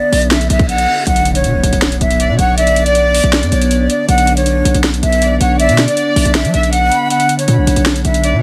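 Trap-flavoured hip hop in B minor at 159 BPM with a half-time feel, dark and brooding, tuned to A4 = 436 Hz and cut from a longer piece. A breathy concert flute with vibrato carries the melody through a delay over a glassy FM pad with ensemble chorus and its own reverb, while a punchy, saturated 808-style bass sits up front beside an electronic trap kit of hard-clipped kick, sharp snare and metallic hats, the kick briefly muted near the end. In the background, a reverse cymbal leads into an impact at 1.1 seconds as the chord moves from Bm to Bmadd9, and a soft-attack violin section played sul tasto enters at 2.2 seconds with a delayed second line, the whole set in a dry, dense, heavily limited master dusted with vinyl crackle.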